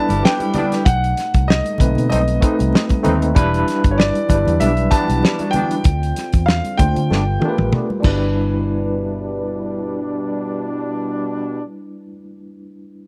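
A gritty, barking tine electric piano with fast tremolo sits up front in this lush, smooth 1970s-style soul passage in G major at 96 BPM. It plays over a fat-snared, tight-kicked drum kit, a round, foam-muted fingered bass, high-tuned congas with soft hands and a lightly swung 16th feel, with a drum fill arriving at 7.1 seconds. A clear, intimate grand piano carries the melody with slapback echo and audible action noise until 7.7 seconds, while a mellow French horn section holds quiet sustained chords, a bright trombone section adds vibrato-laden stabs, and a dark, slightly broken-up guitar riff surfaces briefly in the background of this dry, close small-room recording.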